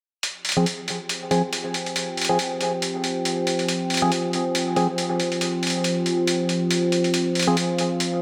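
Deep dubstep with a heavy, dark mood and a half-time, swung feel, cut from a longer piece that sits on a single F minor chord. A deep, detuned analog pad holds sustained chords up front from 1.1 seconds, colored by chorus and phaser under a filter sweep, while a gritty, pitched-down electronic hi-hat with studio reverb carries the drums throughout. Hollow, nasal organ stabs with 12-bit sampler grit, chorus and dub echo punctuate the first half and return briefly at 7.5 seconds, all set in a lush hall reverb.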